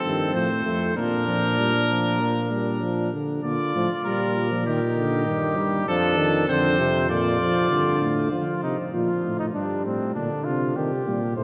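A bright, up-front trumpet carries the melody of this lively, joyful classical canzona for brass ensemble until 8.3 s, over a soft-attacked, close-miked flugelhorn second line, a dark trombone accompaniment with vibrato and a smooth top, and a distant, roomy tuba bass with light vibrato, all bathed in a wet cathedral reverb in this short fragment of a longer piece.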